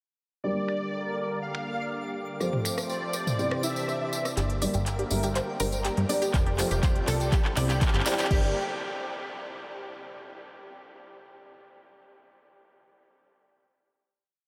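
A straight 122 BPM pulse drives this brief, dreamy and bittersweet progressive house piece in G dorian, with a pop kit of crisp hats, snaps, claps and crash, a tribal loop of rim, low tom and high conga from an overdriven analog drum machine, jingly hand-played tambourine sixteenths, and an up-front overdriven deep kick arriving at 6.3 s with a four-on-the-floor beat. Over Gm, Fadd9 and Cadd9 chords, a thick, wave-folded unison lead sings a repeating riff, a sawtooth supersaw pad holds sustained chords, a mellow felt-muted upright piano plays off-beat close-voiced stabs under a filter sweep, and a very quiet twinkling granular shimmer hangs on a high note. From 4.4 s the build brings a punchy, funky dotted-rhythm bass, a round chorused analog pluck running a 12-step loop that drifts against the bar, and a drum fill, all soaked in a vast ambient reverb before settling on a final Gm chord at 8.3 s.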